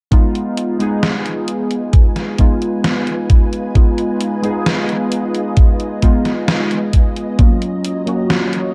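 Warbling, detuned synth keys sit up front in this hazy, woozy vaporwave excerpt, their triangle and sawtooth tones striking quickly and then decaying through analog chorus and delay while a filter sweep keeps the nostalgic lo-fi sound evolving. From 0.7 s a soft string machine drifts in beneath them, holding silky, mellow chords with a slow attack and long release, thickened by ensemble chorus and roughened by vintage 12-bit sampler grit. A thumpy, sampler-style electronic kick drives the straight 4/4 pulse, joined by an 80s digital drum machine whose hi-hat and snare carry a gated reverb; both drum parts sound tape-warm and re-recorded in a small room, and the kick stops at 7.6 s. The harmony rests on a half-diminished Fm7b5 before shifting to Ebm7 at 7.4 s. The dark, warm, lightly reverberant production gives the whole fragment a hazy, woozy feel.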